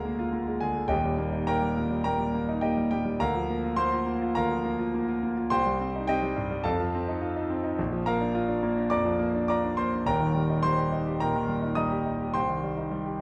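Heard up front in a wet recital hall with a lingering 1.6-second reverb, a concert grand piano sounds natural and warm, with a deep bass. This excerpt from a heroic, brilliant classical virtuoso study in E-flat major moves at 105 BPM in 4/4 with a rubato feel, the solo piano spanning Eb1 to Eb6. Its harmony travels from Bb7/D through Eb, Cm, F7 and Bb before settling back toward Eb and Cm.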